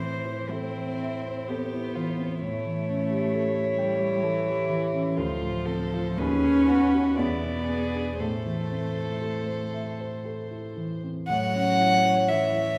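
A pure, floating violin carries the yearning melody up front with a soft attack and airy sul tasto bow, while a woody second violin with vibrato sits distant and an intimate cello adds its own sul tasto line with vibrato over a dark, mellow grand piano of long sustain, in a solemn, rubato slow romantic movement for piano quartet in A minor and 3/4 at 54-66 BPM, set in a wet recital hall heard from further back and cut from a longer piece.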